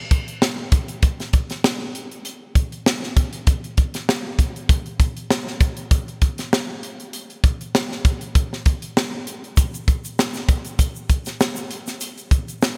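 Pop with an urban, breezy mood and a lightly swung 16th-note feel, built on a crisp, polished fusion drum kit with a high-tuned snare, punchy kick and hi-hat up front, joined at 9.6 s by a grainy tube shaker sitting close and dry in the background, all set in a small room with light reverb and a bright 1980s-style digital sheen.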